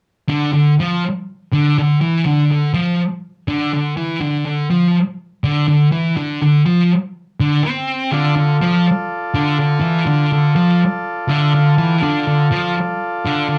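A thick, double-tracked fuzz guitar sits up front, picking a swaggering, menacing riff in D minor that runs from 0.3 to 13.6 seconds, its distorted tone sitting in the low register. This is a rock passage at 123 BPM in a straight 4/4, cut from a longer piece and built on a Dm chord. At 8.1 seconds a vintage combo organ enters behind the guitar with sustained chords in a higher register, its clean, buzzy tone bathed in spring reverb and set lower in the mix. The transistor organ adds a brief fill between 11.0 and 12.0 seconds. The whole performance sits in a wet club room with a short reverb tail.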